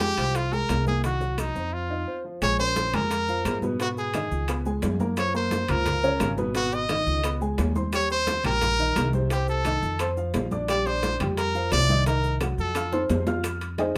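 A brilliant, forceful jazz trumpet with light vibrato and scooped notes leads this fiery, sophisticated Afro-Cuban jazz excerpt in Bb minor at 174 BPM, sitting up front over a slightly detuned vintage upright piano, a thumpy, dark pizzicato upright bass on gut strings, and background ringing congas, tight high-tuned bongos, saturated metal-shell timbales and grainy maracas, with very quiet woody claves entering at 0.2 seconds, a brief break, and a drum fill at 12.8 seconds in a moderate club reverb before the trumpet stops at 13.1 seconds.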